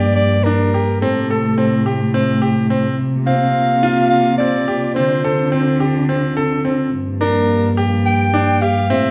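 A breathy, subtone soprano saxophone sings a scooped, whispered melody up front over bright grand piano arpeggios with audible action noise, a woody bowed cello bass and a detuned, chorused analog pad in this hypnotic, restless 9.1-second excerpt of contemporary chamber music in 7/8 at 213 BPM in G minor, set in a wet recital hall.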